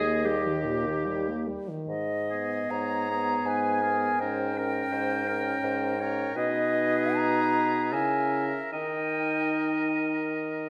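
In a slow, rubato 3/4 that drifts between 71 and 84 BPM, this excerpt from a longer romantic movement for wind quintet unfolds in G# minor with a yearning, elegiac mood. The concert flute carries the melody high above the ensemble in a pure, straight tone with tongued notes. Beneath it, the oboe's clear, vibrato-touched second line sits close and present. The bright clarinet, with its soft attack and vintage character, and the French horn, with its gentle vibrato, warm tone and soft attack, fill in the accompaniment. The mellow bassoon anchors the bass up front with a smooth top and light vibrato. After a brief opening on D#, the harmony settles onto G# minor at 1.9 seconds and passes through darker diminished and half-diminished colours before returning to D# near the close; the flute falls silent at 10.3 seconds, while the rest of the group sustains into a wet recital-hall reverb.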